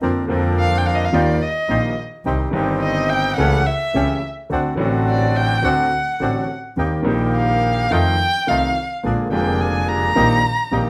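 A clear, vintage-toned grand piano, dark and reedy bandoneon stabs and a bowed double bass begin this passionate, playful tango together, moving at 107 BPM in 4/4 with a rubato feel. At 0.6 seconds a warm, expressive violin enters up front and carries the solo line high above the band, its soft attack, vibrato and portamento giving it a singing, lyrical character. The piano sits close in the mix, playing an accompaniment that spans deep low notes to the middle register. Beneath it the double bass holds a smooth, even foundation with its own vibrato. The harmony moves from Bbadd9/F through Cm, A7/C# and D7 before settling toward Eb/Bb, and the tuning sits a little above standard pitch at A4 = 444 Hz. The players perform live in one large studio room with moderate reverb, and the passage is cut from a longer piece.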